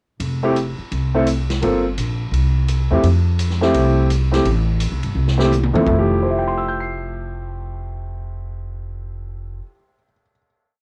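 An up-front baby grand piano comps with syncopated rootless voicings through this short, joyful, brassy big band swing piece in F major at 170 BPM, over a woody, dark pizzicato upright bass in a two-feel and a punchy, natural big-band drum kit with a cassette-tape tint that rides the cymbal with sticks until a fill at 5.2 seconds leads into a final chord at 5.9 seconds, the room carrying light reverb and a homespun cassette character.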